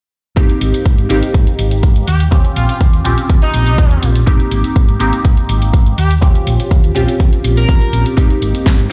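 This is a funky, feel-good stretch of filtered disco house at 123 BPM in Ab major, and from 0.4 seconds the whole groove starts together: a punchy, layered electronic kick sitting up front, a house kit with a punchy snare and bright hats that pump against the kick, and a barely audible tube shaker, close and dry. A round, dark hollow-body electric bass, played with the fingers, holds down the low end with the same sidechain pumping and a low-pass filter. Above it, a detuned sawtooth and square-wave polysynth comps in the middle register with a fast, plucky attack and a mellow, sustained tail, colored by chorus, phaser, pumping and filtering. At 2.1 seconds a horn section enters with a pop-style ensemble line, bright and lightly vibratoed, run through a low-pass filter, digital delay and pumping, before dropping out at 8.1 seconds. The harmony rocks between Abmaj7 and Eb13 under a filter sweep that spans the whole passage, and the mix is dry and close while also carrying the air of a big system playing in a bare room.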